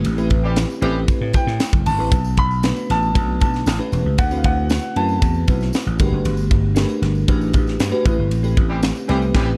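Urban and nocturnal, this short cut of polished 1980s jazz-funk pop moves at 116 BPM in A dorian, with a growly, punchy slap bass and a crisp fusion kit with a high-tuned snare and tight kick sitting up front, a bell-like FM electric piano sparkling through lush chorus, and a jingly tambourine in the background. A clear baby grand piano carries the melody with digital delay from 1.3 to 5.4 seconds, while a tight horn section in octave doubling adds brief second-line phrases at the start and again from 8.7 seconds, framed by band accents. The dark, dry production keeps the Am7 to Bm7, D13 and Gmaj9 changes close and intimate.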